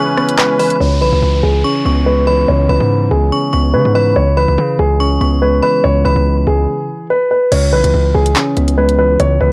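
Ominous, tense drill hip hop in a half-time feel, where a dark, mellow grand piano with audible action noise carries the melody up front through low-pass filtering and analog delay, a bright, inharmonic FM bell rings a second line until 6.3 seconds, soft detuned electric-piano-like synth keys with chorus and a filter sweep accompany, a reedy musette accordion holds chords only in the opening break, a drill kit of crash, handclaps, hi-hat and rim click appears briefly early and returns at 7.5 seconds, a saturated, aggressive 808-style bass pushes in from 0.8 seconds alongside a downlifter, and the whole dry, gritty cassette-tape recording halts in a stop before the final section, all over a single C#m7 chord.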